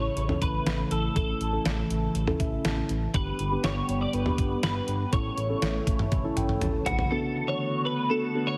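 A straight, steady pulse from a detuned 8-bit drum machine enters this upbeat yet wistful synth-pop excerpt at 0.2 seconds, its thumpy kick, medium-tuned snare, hi-hat and toms sounding tape-warmed and up front, with a fill arriving at 6.1 seconds. Underneath, a smooth, dark synth bass holds low sustained notes with vibrato. A bright, twangy twelve-string electric guitar carries the picked melody, clean and compressed, shimmering with ensemble chorus and tape echo. Muted, felt-like synth keys add soft, intimate accompaniment with short fills. A swirling, nasal analog pad sustains evolving chords through its phaser. The harmony moves from A to G and back to A before settling on Bm7, and by 7.1 seconds the bass and drums have stopped, all inside a lush hall reverb and a heavily squashed, radio-style mix.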